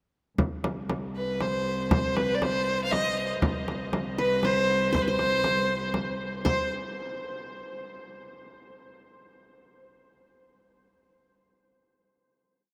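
A straight triple metre carries this short, complete piece for an Arabic maqam ensemble, its mood hypnotic and soulful. A frame drum sits close and dry up front, struck with hard hands in a low and high stroke pattern, while a muted cello holds a dark, veiled drone from 0.4 seconds, its bowed tone soft in attack, with vibrato and portamento, set at a distance. At 1.2 seconds a clear, focused solo violin takes the bowed modal melody, ornamented and shaded with vibrato, heard up front yet with a distant air. A bright-edged qanun, played with fingerpicks on triple strings, joins in the background at 4.2 seconds with the same line, adding its own ornaments. The ensemble rings out in a vast, echoing space with a huge, wet reverb, and the piece closes on a final note that lingers to 8.0 seconds.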